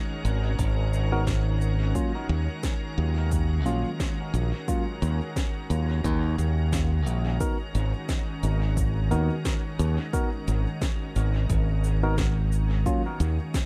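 A bright, punchy fingered electric bass sits up front in this deep, spacious ambient dub excerpt, riding a swung groove over a calm, full-bodied organ-like pad whose sustained chords glow with ensemble chorus and built-in reverb from the very start. An overdriven electronic kick with a deep, layered weight anchors the beat, while a tape-warm shaker and woody snare and clean tine electric piano stabs, entering at 1.1 seconds, both trail off into dub echo. The whole mix is bathed in a heavy digital ambience, moving from D#m7 toward G#m7 as the second section opens at 7.4 seconds.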